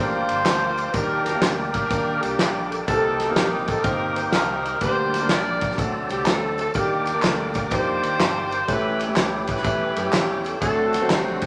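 A tight, clear saxophone section carries the melody from the first moment of this short uptempo gospel cut, backed by a deep-toned concert grand piano, a thick, lightly overdriven tonewheel organ with key click and slow rotary speaker holding chords, and a punchy fingered electric bass. At 0.3 s a natural drum kit with a fat snare, punchy kick and ride cymbal joins up front, along with tambourine and group handclaps further back. The mood is solemn and fervent at 124 BPM with a swung 4/4 feel, moving through minor-key changes from Gm7 to D7 under a roomy studio reverb and a touch of tape saturation.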